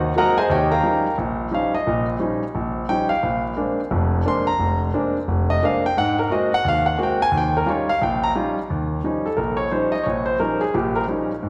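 A brisk 4/4 swing at 176 BPM drives this sophisticated jazz fragment in Eb mixolydian, cut from a longer piece, with a lone concert grand piano moving through Eb9, Bb9 and Ab9 before settling back on Eb9 by 7.3 seconds. The piano is clear and intimate, sitting up front with deep bass, long sustain and audible action noise. It rings into a wet concert-hall reverb whose top end is gently rolled off, and the music shifts into a new passage at 8.7 seconds before it cuts at 11.5.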